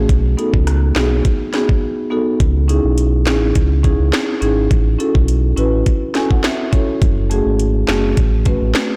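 A blown-out, overdriven recording with little reverb frames this tough, sultry dancehall fragment, where a deep, sustained sine sub bass doubled at the octave sits up front beneath an electronic island pop kit of knocking kick, sharp snare, metallic hats, rim clicks and finger snaps re-recorded in a large room, while a close-miked, dry marimba played with medium mallets pumps against the sidechain through chords moving from B through C#madd9 and A6 to F#madd9, with a brief break at 1.8 seconds and a marimba fill at 5.9 seconds.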